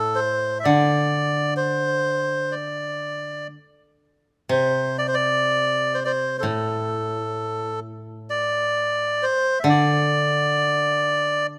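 This is a short passage of Japanese traditional chamber music, austere and calm, moving in a free, rubato 4/4 at roughly 59-67 BPM. A melodica carries the melody in a fairly narrow upper register, its reedy, breathy tone sitting close, dry and full at the front of the sound. Beneath it, a koto played with fingerpicks supplies the accompaniment in a low register, its bright, woody voice also up front but a little softer than the melodica. Both instruments play through nearly the whole passage, and the music moves into a second section at 4.5 seconds. Close, detailed microphones and a light reverb give the pair an intimate, uncluttered presence, with the tuning set to A4 = 442 Hz.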